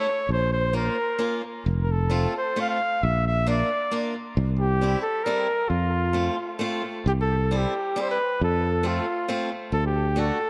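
Bouncy and jolly, this short fragment of alpine dance-band folk moves in a loose, rubato 3/4, with a clear, close-miked flugelhorn carrying the melody up front over boxy, bright picked swing-style acoustic guitar and a growly, direct fretless electric bass, while analog delay on the horn and guitar and a spring reverb give an echo-heavy sound before a new section arrives at 7.1 seconds.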